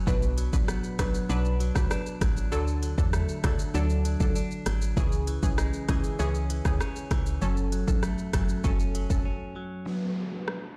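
This dancehall excerpt opens at once with a clean, direct-recorded electric guitar picking bright, twangy arpeggios over a woody, round FM bass, joined at 0.1 s by a warbling vintage analog pluck and an electronic afro-pop drum kit with a deep kick, crisp hats, rim click and shaker sitting up front. At 98 BPM in a straight 4/4, the groove feels hypnotic and sultry, moving through Bm, D, C#m and F#m. The pluck carries chorus, sidechain pumping and a low-pass filter, giving the accompaniment a pulsing, filtered shimmer, while the dark, decaying bass stays soft beneath. The bass drops out at 9.2 s, just ahead of a short break, and at 9.9 s a distant, lush violin section appears in the background with vibrato and portamento, treated with delay and a low-pass filter, as an electronic downlifter sweeps in on the return to Bm. The whole mix sounds as if played on a big sound system in a bare stone room, lending a reverberant, cavernous air.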